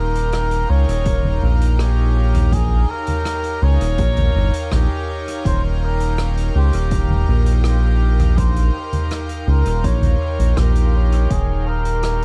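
Ambient dub at 82 BPM in 4/4 with a straight feel, sitting on a single Eb7 chord in Eb mixolydian, this excerpt from a longer piece feels peaceful and spacious. A cup-muted trumpet carries the melody between G4 and Db5, its mellow, veiled tone set distant and roomy and trailed by dub echo. Beneath it, an airy, breathy pad holds sustained chords with a slow attack and long release, its detuned layers and noise texture shimmering through chorus. The round analog bass sits up front, deep and dark with a fast attack, its sustained notes evolving through ring modulation. A soft-mallet acoustic kit enters at 0.2 seconds with hi-hat, rim clicks and toms heard from a distance, while a punchy, layered electronic kick joins in the background at 1.1 seconds and drops out at 11.5 seconds. The echo-heavy mix carries a small-room reverb and a bed of vinyl crackle.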